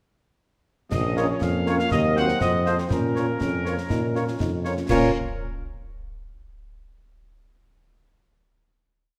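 A moderate scoring-stage reverb gives this short, complete wind band piece a roomy sense of space, even though the concert snare drum, clash cymbals and concert bass drum sit close and dry, with dark cymbals and a marching snare over a bass drum on the beat. It is a resolute, stern military-style march in Bb minor at 121 BPM in a straight 2/4. From 0.9 seconds a dark, distant trumpet section carries the melody with a soft attack, over a clear tuba that sits up front, playing bass on the beats and sustained bass, and a very quiet, punchy trombone section holding chords. At 1.2 seconds a tight woodwind section and a mellow, smooth-topped French horn section, the horns sitting in the background, join with after-beat and sustained chords. From 1.4 seconds a warm euphonium adds a lightly vibrato counter-melody that answers at phrase ends. The harmony moves from Bb minor through Cdim/Eb and F7 back to Bb minor, and the piece closes on a final chord at 4.9 seconds.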